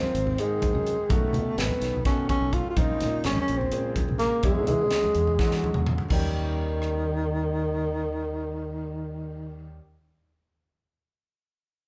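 Electric jazz fusion in 7/8 at 252 BPM counted in eighths, this short cut from a longer piece feels funky and nocturnal, with a straight feel. A breathy, dark tenor saxophone carries the melody up front with vibrato, subtone, scooped notes and a soft, whispered attack that makes it sound intimate. Underneath, a growly fretless electric bass sustains its notes with a direct, amped tone, while a clear baby grand piano with long sustain sits in the background, providing accompaniment over chords such as Ab69, B9, Bbm9 and E13 before landing on Eb7. A crisp, polished acoustic drum kit with a high-tuned snare and tight kick plays up front alongside hard-handed congas set back in the mix, and a drum fill from 5.4 to 6.1 seconds leads into a new section. The congas stop at 6.3 seconds and the drums at 6.9 seconds, leaving saxophone, piano and bass to carry the close, all heard as a band playing live together in a large studio with moderate reverb.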